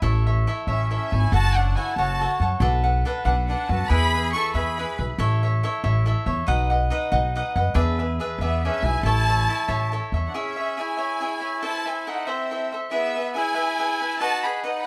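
A crisp, picked cavaquinho and woody pizzicato upright bass open this proud, romantic mariachi excerpt in a straight 6/8, joined at 0.7 seconds by a lush, up-front violin section singing the melody with expressive vibrato over a distant, clear trumpet second line, both pausing at 5.0 seconds and returning at 8.4 seconds, while the bass drops out at 10.3 seconds as the harmony turns toward C#m and Am under light reverb and close, detailed microphones.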